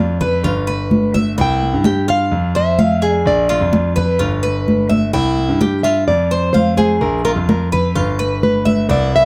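A fingerpicked nylon-string guitar carries the melody over the bright, metallic arpeggios of a picked Cuban tres with doubled strings, while a clear, up-front grand piano takes the bass line, its action noise audible in the intimate sound. Ringing, high-tuned congas struck with hard hands join at 0.2 seconds, giving this warm, danceable fragment of Cuban son and guajira its pulse. Light reverb surrounds the parts as the progression cycles through G7, C, F5 and B-flat chords.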